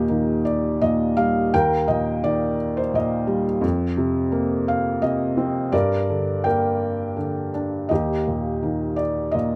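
In a rubato 3/4 lilt at 84 BPM, this bittersweet, brooding classical fragment, cut from a longer piece and tuned to A4 = 439 Hz, features a lone felt-muted upright piano, intimate and mellow with audible action noise, sitting up front in a dry, closely miked sound as it moves lyrically from Eb through Fsus4 and Gm back to Eb across a range from Eb2 to G5.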